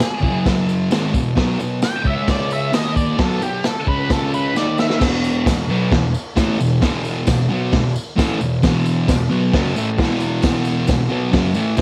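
Garage rock with a swaggering, rowdy attitude, this short excerpt, cut from a longer piece, drives along at 132 BPM in a straight 4/4. A thick, double-tracked fuzz guitar carries the picked riff from 0.2 seconds onward, sitting up front with a warm, distorted weight, while a dark octave-fuzz lead guitar plays the melody until 5.0 seconds. Underneath, a crunchy breakbeat drum kit with dark cymbals, a tight kick and a medium-tuned snare sounds gritty and rolled-off on top, its cassette-tape coloring matching the lead guitar's. A jingly tambourine rattles close and dry in the background, and a drum fill near 4.6 seconds marks the move into the next section. The whole thing has the small-room feel of a home recording on cassette.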